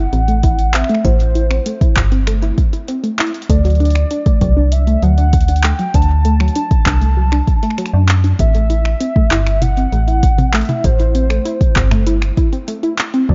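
Cerebral and intricate, this IDM excerpt moves at 98 BPM in a straight 4/4, centred on A dorian and shifting from Am to D at 3.5 seconds and back to Am at 8.4 seconds. A warbly, nostalgic lead carries the melody between C5 and A5, its detuned triangle-and-sawtooth tone wave-folded and sustained with vibrato, chorus and digital delay. Beneath it, a dusty, lo-fi pluck plays arpeggios from F#3 to E4, a mellow detuned sawtooth with a filter sweep, short decay, chorus and tape echo. A metallic FM bass sits up front between G1 and F#2, dark and decaying after a fast attack, joined from 0.4 seconds by a deep, tape-warm electronic kick. A booming analog drum machine enters at 0.1 seconds with finger snaps, handclaps, metallic hi-hats and toms, while the whole mix stays dry and dark, rolled off above 7.5 kHz.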